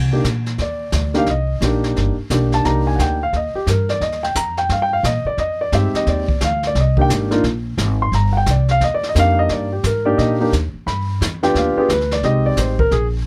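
A grand piano leads this smoky, late-night jazz piano trio, taking a solo across the whole of this short excerpt cut from a longer piece, with an intimate, up-front tone and audible action noise that gives it a natural, close-up presence. It moves through a range from Ab3 to C6 over a C minor progression that begins on Cm9, shifts to Fm9 at 5.4 seconds, returns to Cm9, then passes through G7 to Abmaj9. An upright bass plays pizzicato beneath it, woody with steel strings, and it also sits up front in the mix. The brushed drum kit, with its medium-tuned snare, boomy kick and hi-hat, sounds acoustic and natural, as if in a small room, and sits lower in the balance than the piano and bass. The trio swings in 4/4 at 175 BPM, and the close, detailed microphones with little reverb give the whole recording a dry, intimate feel.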